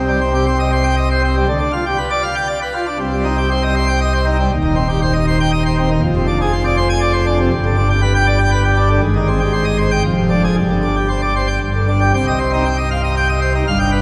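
A brilliant pipe organ plenum, full with mixtures and crisp chiff and placed up front, plays a dramatic, majestic classical toccata alone in C minor at 118 BPM in 3/4, its baroque voicing spanning Eb1 to Ab5 and moving through G7/D, Abmaj7 and a Gsus4 before returning to C minor at 12.1 s, all bathed in a lingering 3.1-second church reverb in this 14-second passage cut from a longer piece.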